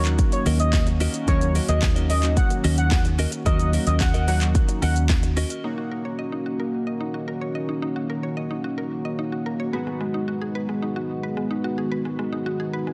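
A straight 4/4 house groove at 110 BPM drives this confident, energetic dance-pop excerpt: a punchy, up-front kit of kick, cracking snare, handclaps, metallic hi-hats and shaker enters at 0.1 s over a dark, round, foam-muted fingered bass holding D#2. Through the opening drop, a bold octave-doubled lead with vibrato and tape echo carries the melody and a clean, direct-recorded electric guitar picks a chorused riff, while a glossy pulse-width polysynth and a smooth, detuned analog pad pump with sidechain on D#m7. The lead drops out at 4.9 s and the bass at 5.4 s. From 5.6 s, as the drums and guitar fall away, a woody, bright FM mallet pluck spins echoed arpeggios over the pumping synths, and the harmony moves to G#m7 at 9.7 s.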